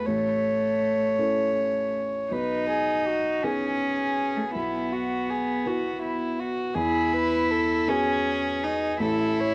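A dark, sul tasto violin carries the melody up front in this intimate, tender neoclassical piece for piano and strings, its bowed tone pure and floating with a soft attack and a smooth top. Beside it, a rich cello plays a second line, also bowed sul tasto by a single player with the same soft, floating purity. Beneath them sits a felt-muted upright piano, mellow and thickly felted, providing accompaniment further back in the balance. The music moves in a rubato 6/8 at 53 BPM in E major, drifting through A, G#m/B, Bsus4 and Eadd9 before returning to A at 9.0 seconds. A moderate spring reverb and studio ambience surround the trio, and the cassette home recording lends the brief excerpt a close, private character.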